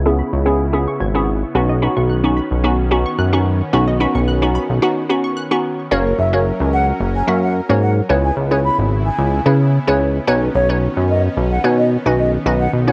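Energetic and driving, this 110 BPM pop clip, cut from a longer piece, has the hazy charm of a cassette home recording with light reverb. A glossy, up-front chorused synth bass and a crystalline wavetable pluck carry it from the start, backed by soft, detuned supersaw chords, while a lush, punchy unison pluck plays arpeggios until 5.6 seconds through a build-up with a filter sweep and a short break. Just after the drop at 5.9 seconds, a breathy, mellow concert flute with expressive vibrato and tape echo enters at 6.2 seconds and takes the melody over chords moving from F# back to C#m7 and Badd9.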